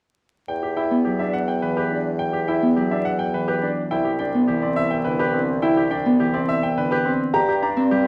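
At 0.5 s a grand piano carries the melody in a brilliant, intimate voice, its action noise audible and its notes held with long sustain, while a bassoon with light vibrato plays the bass line in a classical style. This is meditative, hypnotic minimalist pattern music in 3/4 at 105 BPM, set in E minor with a straight feel. A second concert grand adds arpeggios from 0.8 s with a clear, open tone and deep bass. A thumb-plucked Celtic harp joins the accompaniment at 0.9 s, ringing and up front. The harmony moves from Em7 to Cmaj7 and then to Gm. The ensemble is heard from further back in a large, wet reverberant room with vinyl crackle over the sound, and the passage is cut from a longer piece.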